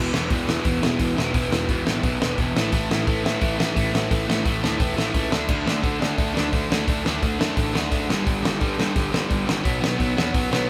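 Punk rock at 173 BPM in a straight 4/4, this short excerpt cut from a longer piece has a rebellious, rowdy mood, with the band playing live together in one room under light reverb. A crunchy, double-tracked overdriven guitar sits up front with a picked riff over the chords E5, A5, D5, G5 and B5, while a growly fuzz bass rumbles in the background. A loose acoustic kit drives everything from 0.1 seconds, its punchy kick, fat snare, hi-hat and dark crash cymbals filling a pumping studio room.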